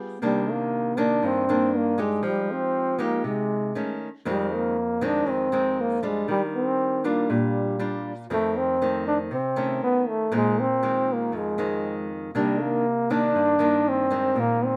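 A mellow trombone carries the melody up front in this intimate, wistful bossa nova in C minor at 119 BPM, its jazz-style solo line shaded with vibrato, scooped notes and a smooth top. A fingerpicked nylon-string guitar with fresh strings, a small, close sound and audible finger squeak accompanies from the first moment, moving through rich chords such as Cm9, Fm9, Ebmaj9 and Bb9sus4 before returning to Cm9 near 12.3 seconds. Light reverb surrounds this short section, which is cut from a longer piece.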